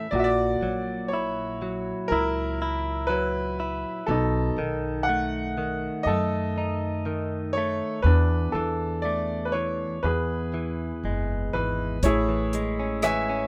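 Acoustic folk-pop ballad in A major at a slow 60 BPM, hopeful and nostalgic in mood, cut from a longer piece with a light reverb around it. A brilliant, woody upright piano carries the melody up front over a clean, compressed electric guitar picking out accompaniment and a thumpy pizzicato upright bass, moving through F#7/A#, B7 and E7sus4 before resolving to E. At 12.0 s a dry compact cocktail drum kit with a punchy kick, hi-hat and rim click joins as the harmony settles on Amaj7.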